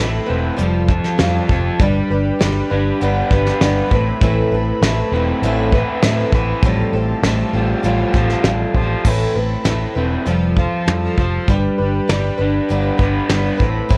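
Folk rock with a heartland rock pulse, this wistful, dusty clip from a longer piece moves at 99 BPM in a straight 4/4 in A minor. A picked twelve-string acoustic guitar carries the accompaniment with a shimmering, octave-doubled ring and audible finger squeak, while a crunchy overdriven electric guitar, bright and double-tracked, plays a riff alongside it. Underneath, a vintage foam-muted fingered electric bass sits up front with a dark, round tone, and a distant chamber string section holds very quiet bowed chords with a reedy, gut-string, period-style colour. A soft brush drum kit enters at 0.6 seconds, up front with a fat snare, tight kick, hi-hat and crash cymbal. The harmony circles through Amadd9, Fadd9 and G, shifting to a new section at 9.1 seconds, and the whole mix carries light small-room reverb and the worn, warbly pitch drift of old cassette tape.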